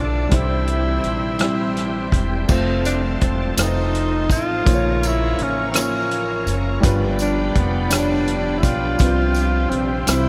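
A slow, straight 6/8 pulse at 55 BPM carries this hopeful, uplifting gospel passage in F major, where a breathy, up-front tenor saxophone with vibrato, scooped notes and delay sings the melody over a boxy concert grand piano with long sustain, a bright tonewheel organ holding chords through a slow rotary speaker in the background, floating sul tasto strings, and a woody pizzicato upright bass, while a warm soul drum kit with crash, hi-hat, punchy kick and rim click joins at 0.3 s and a jingly tambourine at 2.5 s, the mix soaked in huge, dreamy reverb.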